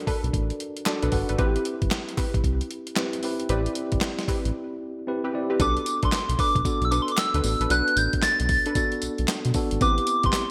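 A soft, warbling FM synth lead with chorus and tremolo steps up front at 5.6 seconds over a punchy, slick new jack swing groove at 114 BPM, where a gritty, compressed sampler-style drum kit with gated reverb, a round analog bass, a worn, slightly out-of-tune tine electric piano with light overdrive and a fill at 0.6 seconds, funky chorused polysynth stabs and a very quiet, crisp group handclap ride a swung Bm7 to Am9 vamp, with a break at 4.5 seconds in this bright 1980s-style excerpt.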